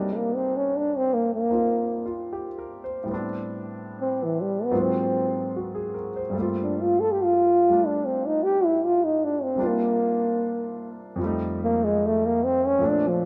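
A breathy trombone and a warm concert grand piano begin together, the trombone carrying the melody up front over the piano's accompaniment in this romantic, late-night jazz ballad. The tempo is a slow 74 BPM in 4/4 with a swung eighth-note feel, tuned to A4 = 439 Hz. The trombone takes a solo across the whole 13.3 seconds, its mellow tone coloured by light vibrato and a jazz style. Beneath it, the piano sounds intimate and natural, with deep bass and audible action noise. The harmony moves through rich extended chords, from Cm9 through Am11, Ab13 and Gm11 to Cm11, landing on F9 at 11.2 seconds. A moderate plate reverb gives the short passage, cut from a longer piece, a soft, lingering space.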